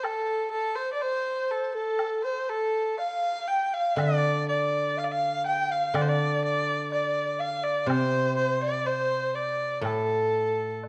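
A moderate recital-hall reverb gives this short cut from a longer Chinese traditional chamber piece a gentle bloom, its tender, wistful mood unfolding in a free, rubato 2/4 at about 61 BPM. An earthy, up-front erhu carries the bowed melody with light vibrato and portamento, alongside a large bamboo dizi whose buzzing membrane lends an airy, hollow second line, while a very quiet woodblock sits close and dry underneath. From 4.0 s a ringing, silvery guzheng, played with fingerpicks and placed up front, adds low accompaniment.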